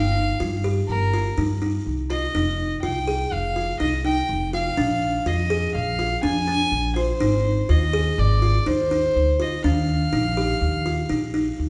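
This restless, hypnotic chamber piece in an uneven 5/4 at 123 BPM opens with all three parts at once: a buzzing kalimba plucked with the thumbnail cycles through short, airy arpeggios while a pizzicato upright bass with steel strings anchors the low end in F dorian. Above them a single bowed violin with a nasal, reedy gut-string tone carries the melody in period style, sounding somewhat distant despite its place at the front. The chords move from Csus4/G through Fm7, Bb7 and Ab6 to Ebmaj9, and a recital-hall reverb with a dark top end surrounds this 11.7-second excerpt cut from a longer work.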